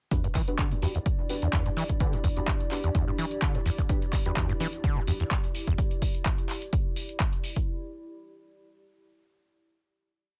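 A squelchy, distorted acid bass with a filter sweep drives this gritty, dark acid house piece in E minor at 127 BPM, its 12-step loop drifting against the bar over an up-front four-on-the-floor kick and a punchy analog drum machine's claps and hats, while a moody detuned pad holds a high note and soft phased chord stabs shift in parallel, with a warbling, nostalgic lo-fi pad entering at 1.0 s in a dense, dry, heavily limited mix.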